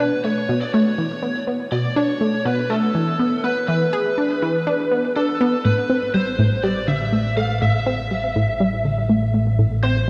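Ambient, sequencer-driven space music with a hypnotic, mysterious mood, in a straight four-beat pulse and heard as an excerpt of a longer piece. A bright, round analog pluck carries the riff up front, its detuned sawtooth tone given a fast attack and quick decay, thickened by chorus and delay, while a filter sweep moves over this arpeggio sound until 5.7 seconds. Above it, an overdriven electric lead guitar through a small cranked amp plays the picked melody, also up front and trailed by delay. At 5.7 seconds an evolving analog drone enters as the bass, its pulse-width-modulated tone swelling in slowly and sustaining into a long release, thickened by chorus. The harmony moves from B minor through E7 before settling on A minor, all bathed in a cathedral reverb that suggests a vast, echoing space, with the grain of cassette tape over the whole recording.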